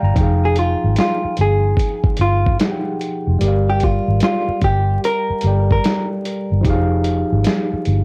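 A swung 74 BPM groove in 4/4 sets up this hazy, nostalgic lo-fi hip hop fragment in F dorian, with a gritty, compressed sampler-style soul drum kit entering at 0.2 seconds, its thumpy kick, medium-tuned snare and hi-hat overdriven and sitting up front. A dark, round, foam-muted electric bass with transformer saturation anchors the low end under a clean tine electric piano playing Fm9 and Gm7 chords through its built-in speakers. A picked hollow-body jazz guitar carries a short melody from 0.5 to 6.1 seconds, and light reverb, cassette tape and vinyl crackle give the home-recorded sound its aged patina.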